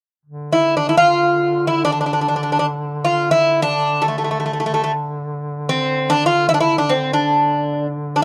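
A distant, roomy duduk drone with a folk-style vibrato sounds first at 0.3 s on a low D, and at 0.5 s a bright, metallic bouzouki with double and some octave-doubled strings joins up front, picking a longing, melancholic makam melody in this dry, close 1970s-style recording cut from a longer piece.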